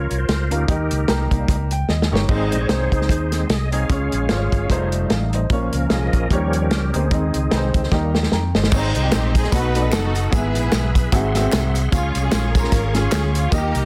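A dense, heavily limited modern mix with light studio reverb carries this soulful, hopeful slice of uptempo gospel, cut from a longer piece and set in a swung 4/4. A reedy, bright tonewheel organ, with audible key click, chorus vibrato and a fast rotary speaker, holds sustained chords and takes the spotlight as a solo over the first 8.7 seconds. Beneath it, a clear, natural baby grand piano accompanies, a round, punchy fingered electric bass sits up front, and an acoustic soul drum kit with dark cymbals, a medium-tuned snare and a tight kick sounds both distant and roomy. The piano slips in a short fill, and the drums add two fills, the second leading into the next section. At 8.7 seconds a lush, close studio string section takes the melody with smooth, even vibrato, while tambourine and handclaps, including egg shaker and group claps, sit in the background. The harmony moves through gospel changes, with chromatic colour from chords such as B7 and Ab7b13 before settling on Db.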